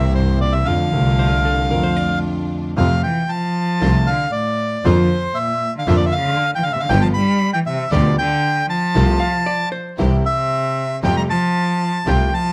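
Tango in F major at 116 BPM with a rubato, playful and elegant feel, where a reedy, up-front bandoneon carries the melody over a portamento-laden cello second line, intimate piano accompaniment with audible action noise, a focused bowed double bass, lush string stabs in the background, and a dark hollow-body jazz guitar appearing briefly at 1.2 and 9.2 seconds, all under light reverb, close microphones and vinyl crackle, with a break at 1.7 seconds before the music moves from C7 toward a closing Fadd9.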